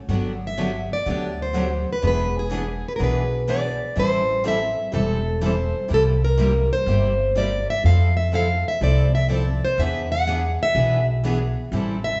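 A swung 4/4 pulse drives this playful jazz manouche excerpt. Two picked steel-string acoustic guitars supply the chords, one boxy and the other bright and full-bodied, over a woody, thumpy upright bass with dark gut strings sitting up front, moving through Gmaj7, E7, Am7, C7 and Fmaj7. From 0.5 s a plugged-in parlour guitar carries the melody up front with a warm tone, and the whole band plays live in one room, bathed in a lush large-studio reverb with a softened top end.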